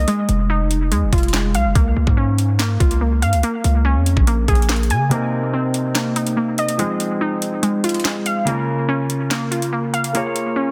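A half-time drill groove in 4/4 drives this cold, menacing hip hop clip, with an electronic kit of knocking kick, sharp snare, claps and metallic hi-hats sitting up front. A warbly, dusty pluck with a nasal, lo-fi tone plays arpeggios throughout, colored by chorus, tape echo and a low-pass filter, while a punchy, heavy 808-style bass hits hard until 5.1 seconds. At that point the bass drops out for a break, and a dark, mellow concert grand piano comes in as accompaniment with deep low notes softened by a low-pass filter, all within a dense, heavily limited modern master with light reverb.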